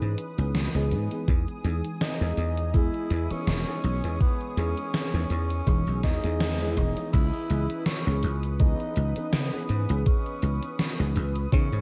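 A lightly swung groove from a gated 80s drum machine, with crash, hi-hat and gated-reverb snare, sets a nostalgic, dreamy vaporwave mood, joined at 1.3 seconds by a thumpy, up-front electronic kick, while a punchy, dry thumbed slap bass anchors the low end. A detuned FM electric piano with a soft pad layer plays chords through phaser, chorus and tape echo, and a thick, warbling unison pad sustains behind it. From 2.0 seconds a breathy, raspy tenor saxophone leads with vibrato and scooped notes under tape echo, and a band accent lands around 6.4 seconds, all wrapped in a cassette-tape haze.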